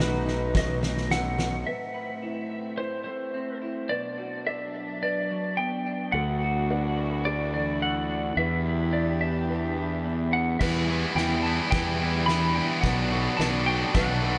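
A clean, twangy lap steel guitar carries the melody up front, its slide tone compressed and trailed by tape echo, in this brooding, cinematic post-rock excerpt in E minor at 107 BPM in a straight 4/4. Beneath it, a reedy studio string section holds sustained chords with a gut-string, period-style tone, while a slightly broken-up electric guitar through a small old amp and a felt-muted upright piano, boxy and intimate with audible action noise, play arpeggios in the background, both touched with subtle chorus and tape echo. A growly fuzz bass sits up front, dropping out after 1.6 seconds and returning at 6.1 seconds. The distant, roomy drum kit, with dark cymbals and a fat snare, plays only briefly at the start and then returns at 10.6 seconds with a fill as the piece builds, joined by a bright, tight distorted guitar riff. The harmony moves from B7 through Amadd9, Bm, Dadd9 and Em7 to Bm7, all soaked in a huge, dreamy ambient reverb.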